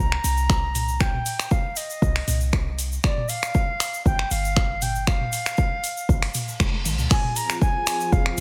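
A digital-sounding mix with an up-front, overdriven electronic kick carries this driving, spiritual afro house at 118 BPM in F dorian, cut from a longer piece. A reedy silver concert flute with a straight tone and dub echo plays the melody over a boomy 808-style bass that pumps to the sidechain, while an afro-pop kit of metallic hats, finger snaps, crash and toms and a grainy, distant egg shaker fill out the groove. A reverse cymbal at 6.3 s leads into a drum fill, the drop arrives at 7.1 s on Fm, and an ethereal, detuned pad with ensemble chorus joins just after.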